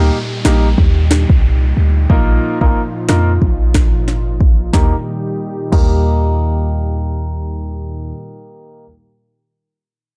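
A bouncy, sunny dancehall groove at 91 BPM in 4/4 with a light 16th-note swing, where an electronic afro-pop kit with a deep kick, sharp snare, rim click and crash sits up front from 0.4 to 5.9 seconds alongside a boomy, sine-based 808-style bass with a noise layer, a fast attack and decaying notes. A clear, intimate grand piano with audible action noise and long sustain carries the accompaniment through low-pass filtering, while a smooth, detuned sawtooth pad with chorus and sidechain pumping holds sustained chords over Eb and Bbsus4. An electronic downlifter and a filter sweep run through the opening 4.7 seconds of this short cut from a longer piece, all set in a dark, warm digital ambience.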